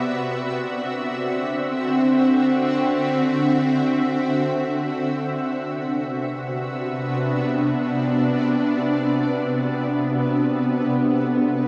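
Floating in free time, this weightless, serene ambient excerpt rests on a shimmering, detuned pad with chorus and a bright, up-front presence, sustaining chords from D9 through Cmaj9#11 to D13/C inside a huge, wet reverb, while a mellow, soft-mallet vibraphone slips in barely audible with ringing arpeggios at 11.2 seconds just before the cut.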